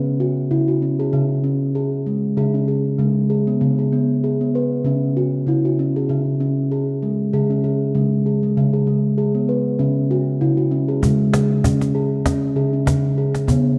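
A lightly swung 4/4 pulse carries this hypnotic, meditative world excerpt, where an up-front steel tongue drum struck with firm rubber mallets rings out round, pure and bright arpeggios over shifting minor harmonies in a reverberant recital hall, joined at 11.0 s by a softly hand-played, snappy cajon with snares that sits close and dry until 13.6 s.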